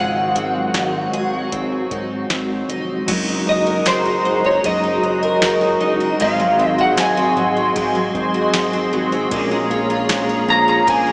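A slide electric guitar with a slightly broken-up edge carries the melody over an up-front hollow, flute-like pad, a shimmering octave-doubled twelve-string acoustic picking arpeggios, and a glossy pulse-wave synth bass in the background, all at a floating 77 BPM in this blissful dream pop excerpt. A dry analog rhythm box with a deep kick, crisp snare, metallic hats, tambourine and cymbals enters at 0.4 seconds, and a dark, clean electric guitar with harmonic tremolo joins at 3.1 seconds as the chords move from Ab7 to Gb69. The mix is soaked in a cathedral reverb with a small-speaker sound, while chorus and delay shimmer on the slide and twelve-string guitars.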